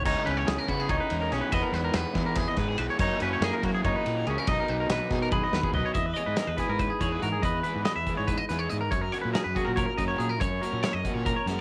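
A home cassette recording with light reverb carries this bright, intricate math rock and midwest emo passage in 7/8 at 284 BPM in eighths, moving in E lydian through chords from C#m7 to Emaj7, F#7 and Bmaj7. Up front, a clean, twangy fingered guitar spins arpeggios through analog delay, while a slightly broken-up, lo-fi guitar through a small old amp carries the melody. Beneath them sit a very quiet, picked accompaniment guitar through another small amp, a double-tracked, overdriven semi-hollow riff in the background, a growly fuzz bass, and a loose indie kit with dark cymbals and a punchy kick in a pumping room, whose fill from 5.3 to 6.0 seconds leads into the second section.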